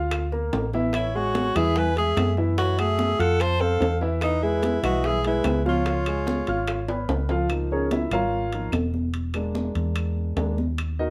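Afro-Cuban jazz at 146 BPM, sophisticated and lively, where a clear alto saxophone with vibrato and scooped notes carries the melody from 0.9 seconds beside an airy, distant concert flute line, over a warm grand piano, a dark, punchy hollow-body electric bass, ringing close timbales, bright background congas, tight bongos and woody claves in light reverb, until a drum fill at 6.9 seconds leads into a grand piano solo from 7.5 seconds.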